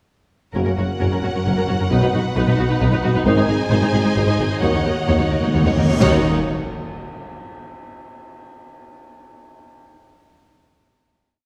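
A warm, expressive cello section drives a bass ostinato, doubled by focused double basses and a soft tuba, through this relentless, heroic epic orchestral film cue in Eb minor at 132 BPM in 3/4, moving over Gb, B, Ab and Ebm7, where a distant bowed violin melody floats above a lush, close string section, rich background violins and smooth violas churning driving ostinatos, and very quiet, mellow horns and roomy trombones adding short accented chords, before round soft-mallet timpani roll in at 4.6 s and a huge, bright cymbal swell at 5.7 s breaks into a low impact on the final chord at 6.0 s, all set in a wet scoring-stage reverb.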